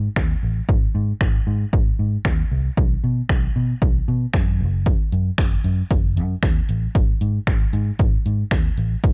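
Dry and up front, this short dance-pop cut in G# minor at 115 BPM moves with confident energy as a dark, round, foam-muted vintage electric bass with sidechain pumping opens at 0.0 seconds, joined at 0.2 seconds by a layered electronic house kit of finger snaps, hi-hat and a punchy kick.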